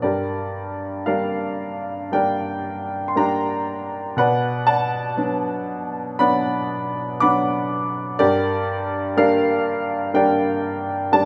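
Classical solo piano, lyrical and reflective with a dark cast, unfolds at a slow, rubato pace in this brief cut from a longer piece. A single upright piano sits up front, its woody, slightly detuned tone ringing with long sustain from low G2 up to D6 under light reverb. The harmony moves from G minor to B minor at 4.2 seconds and returns to G minor at 8.2 seconds.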